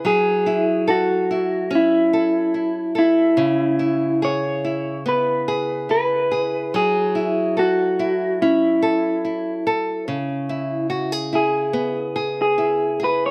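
Dry and close, this outdoor recording carries almost nothing of a room around its two guitars, lending the indie pop excerpt a lonely, hazy mood. An up-front nylon-string guitar is fingerpicked through a boxy, warm accompaniment over alternating F#m7 and C#m7 chords, its pitch drifting with a warbly waver. Above it, an electric guitar through a small old amp picks a slightly broken-up, lo-fi melody trailed by slapback echo, both parts playing from start to finish.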